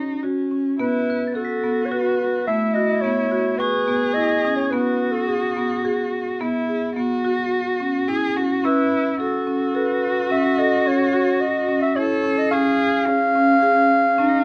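Set in an uneven 7/4 at 107 BPM with a straight feel and tuned slightly low to A4 = 436 Hz, this restless, hypnotic piece of contemporary chamber music is cut from a longer work, with marimba arpeggios on medium mallets sounding under a dark, classical-style solo clarinet melody and a woody, bowed cello second line sung with vibrato, all three up front. From 1.1 to 10.4 seconds a mellow, bell-like glockenspiel on soft plastic mallets rings softly in the background, as if in a boxy small room. The harmony moves from B7sus4 through a rootless Eadd9 and A6 to C#, captured with close, detailed microphones and light reverb.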